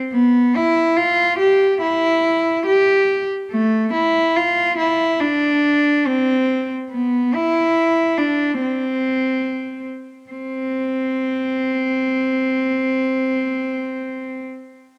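Set in a small, moderately reverberant room, this hopeful, soaring rock fragment at 71 BPM in C major is carried by a single bowed cello played up front in period style, its dark, reedy gut-string tone smoothed at the top and touched with analog delay as it sings the melody from 0.1 to 14.4 seconds, with a new passage arriving around 10.3 seconds before the cut from the longer piece.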